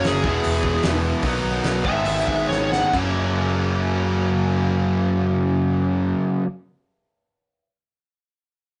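Punk rock with a rebellious, upbeat drive, this short cut opens with a bright, smooth overdriven lead guitar solo over two picked, distorted rhythm guitars (one up front), a growly, punchy overdriven bass and a loose drum kit with a fat snare and dark cymbals, slowing down through a drum fill before the lead and drums stop at about 3.0 seconds, leaving the guitars and bass in a rough rehearsal-room sound with light reverb.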